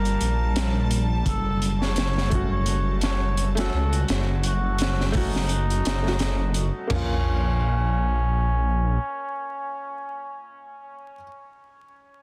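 Trip hop at 85 BPM in 4/4 with a lightly swung sixteenth feel, this brooding, melancholic excerpt sits in B-flat harmonic minor, moving from Gm7 to Gbm and arriving on Bbm at 6.9 seconds as a new section begins. A cup-muted trumpet carries the melody, mellow and veiled, set at a distance with tape echo, while a clear, woody upright piano accompanies with tremolo and tape echo, its action noise audible up close. A gut-toned studio string section holds sustained chords in the background until 6.9 seconds, reedy with a smooth top. Up front, a dark detuned saw bass rumbles deep and beating, thickened by tube saturation, and a crunchy breakbeat kit with a punchy kick, high-tuned snare, dim cymbals and toms drops out at 7.1 seconds. The small room ambience, vinyl crackle and dense, heavily limited master give the whole a gritty, intimate haze.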